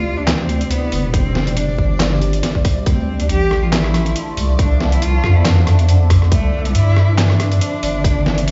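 A meditative, cavernous deep dubstep piece opens with a rich, focused bowed cello melody, distant and carrying vibrato and dub echo. Beneath it sit a resonant, overtone-sweeping drone holding chords from Gsus4 through Dm to Cadd9 with chorus and phaser, a dark, up-front wobble bass with chorus, and a reversed, dreamy granular texture swelling in the background. Compressed, pitched-down trip hop drums with handclaps, hi-hat, rim click and a muffled, overdriven snare arrive at 0.3 seconds in a swung half-time feel, and a tight, layered electronic kick joins at 1.1 seconds, with the mix heard through a big sound system in a bare room under large studio reverb and a dull top end.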